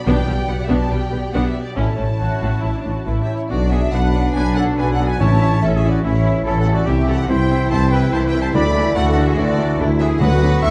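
Cinematic heroic adventure film score, a triumphant excerpt built on lush bowed strings: a very quiet, distant violin section carries the melody over a second violin line, a focused viola section and a smooth cello section sit in the background, and an expressive double bass section sits up front, while a very quiet concert harp rings out arpeggios throughout. Articulate timpani on hard mallets strike briefly at the opening from the background. At 3.1 s a clear trumpet section adds stabs, and from 3.5 s a bright, tight trombone section holds sustained chords over a mellow tuba bass, with the timpani punctuating again at 5.2 s and returning from 8.5 s. The production is dark and reverberant, set in a recital hall.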